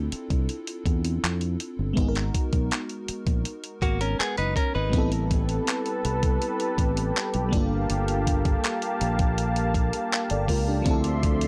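Dry and gritty, this late-night, longing contemporary R&B fragment rides a compressed sampler-style kit of thumpy kick, hi-hat and handclaps and a round, punchy fingered bass under a dreamy, warbling FM electric piano with a soft pad layer, treated with chorus and phaser, while a clean, direct electric guitar picks brief tape-echoed arpeggios from 3.8 to 5.1 seconds and a smooth, detuned analog pad with chorus enters at 4.9 seconds to hold sustained chords through the move from Dm9 and G#m9 to Am9 and Gm9.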